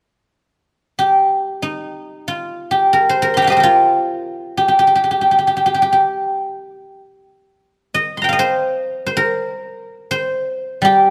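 Flowing in free time, this short passage from a longer piece of Chinese traditional music sets a solo guzheng up front, entering at 1.0 seconds and spanning G3 to C6 in an elegant, longing mood. Played with fingerpicks, the instrument sounds silvery and ringing, captured by close, detailed microphones with a light touch of reverb.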